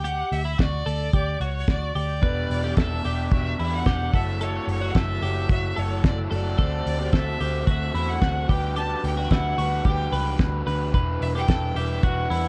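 A distant, intense bowed violin carries the bittersweet, wistful melody with vibrato in this jangly indie pop fragment, over chiming twelve-string electric guitar arpeggios given a compressed sheen and analog chorus. Up front sit a dark, foam-muted picked electric bass and a cloth-damped, thuddy drum kit with a fat snare, tight kick, hi-hat and rolled-off top. From 2.2 seconds a raw, overdriven garage guitar fills in the accompaniment, all wrapped in light reverb and cassette tape color.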